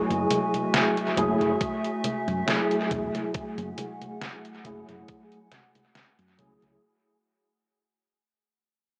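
Woozy and nostalgic, this short vaporwave fragment in F# minor drifts at 69 BPM with a lightly swung 16th-note feel, fading out across its 6.8 seconds over a single F#m9 chord. A clean tine electric piano sits up front with ensemble chorus and dub echo, while a warbling, detuned, lo-fi pad holds mellow sustained chords behind it and a dark, round hollow-body electric bass adds tube-saturated weight. A detuned 8-bit drum machine plays congas, hi-hat and a medium-tuned snare with gritty sampler texture and dub echo, joined at 1.2 seconds by a thumpy electronic kick, all bathed in wet spring reverb for an echo-heavy, small-speaker sound.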